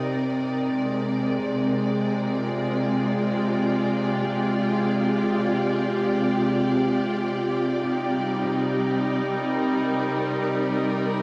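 A rich, bowed string section carries this melancholic ambient fragment in free time, holding smooth, vibrato-laden chords up front from Bb13/C before settling onto Cm9 at 7.2 seconds. Behind it, an airy, wind-like tuned noise texture fades in gradually across the full 11.2 seconds, its breathy, slow-blooming tone sitting far in the background. A deep shimmer reverb and a dark production lend the whole passage a spacious, suspended quality, as if lifted from a longer piece.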